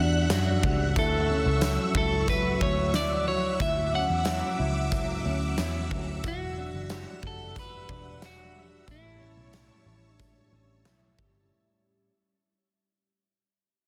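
A twangy, slightly broken-up electric guitar carries the melody through delay from 1.0 s in this dreamy, floating dream pop excerpt at 91 BPM in D major, set over a compressed, chorused guitar playing delayed arpeggios, shimmering sawtooth string-machine violins holding soft-attack chords, a dark, round, foam-muted picked bass and a big-room acoustic drum kit with punchy kick, snare, hi-hat and tambourine, all moving through Em9, Dmaj9 and A7 under light reverb in a dense, heavily limited master as the passage fades out.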